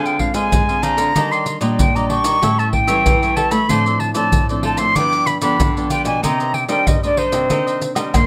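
Yearning and nostalgic, this short fragment of a longer samba and choro piece moves at 94 BPM in a straight 4/4, set in C minor with tuning at A4 = 435 Hz. A silver concert flute carries the melody up front, its airy metal tone shaped by vibrato, a soft attack and a plate reverb. Beneath it, a bright, crisp cavaquinho is picked alongside a small-sounding fingerpicked nylon-string guitar, while a second nylon-string guitar, warm and classical in character, fingerpicks the bass line. Maracas, pandeiro, surdo and tamborim come in at 0.1 seconds, close and dry with soft hands and a deep surdo, and a drum fill arrives at 8.0 seconds. The harmony travels through Dm7b5, Ebmaj7, A7, Dm7/A and G7 before settling on Cm9, all within a moderate studio ambience.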